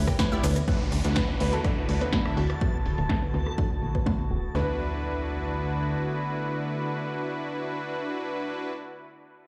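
Euphoric, uplifting progressive house at 124 BPM in D major, cut from a longer piece, where a punchy, tape-warm electronic kick up front and a house kit with low-pass-filtered hats, cymbals and snare drive beneath a tight, nasal sequencer bass, a round, detuned analog pluck arpeggio with chorus and dub echo, smooth supersaw stabs, a morphing, warbling wavetable pad with sidechain pumping, a very quiet velvety synth lead that stops at 0.6 seconds, overdriven rim clicks and congas, a reversed, dreamy swelling texture, and a background downlifter and impact, as filter sweeps move across the drums, bass and pluck from 0.7 to 4.5 seconds over Em/D then D69 chords in a big, bare room.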